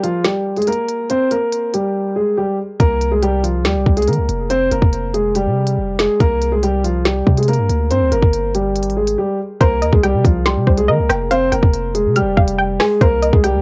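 Drill hip hop in C minor at 141 BPM with a half-time feel, this ominous, dark excerpt opens on a smooth, vintage grand piano melody carrying tape echo, set up front beside an electronic drum kit with a hard-clipped kick, woody snare, crisp hats and rim clicks. The drums drop out from 1.9 to 2.8 seconds, and at 2.8 seconds a long, deep 808-style bass enters with a fast attack and mellow decaying sine tone. The harmony moves through chords such as Gm, Cm7 and Fmadd9, with the drums falling silent again briefly just before the change at 9.6 seconds. There a hollow, bouncy square pluck joins in a high register, detuned and bright, coloured by chorus, ring modulation and a cassette-tape grit. The whole excerpt sounds like a home cassette recording with little reverb, keeping the sound dry and close.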